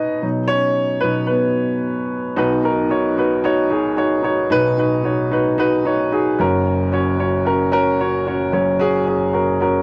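Anthemic and hopeful, this short pop excerpt sets a warm baby grand piano alone at 112 BPM in B major, its open, long-sustaining tone sitting up front and spanning from deep bass to bright upper notes. The piece shifts into a new section at 2.4 seconds, and the harmony rests on B before moving to F# at 6.4 seconds. The sound is dry and close, with a small-room ambience that recalls a 1970s studio.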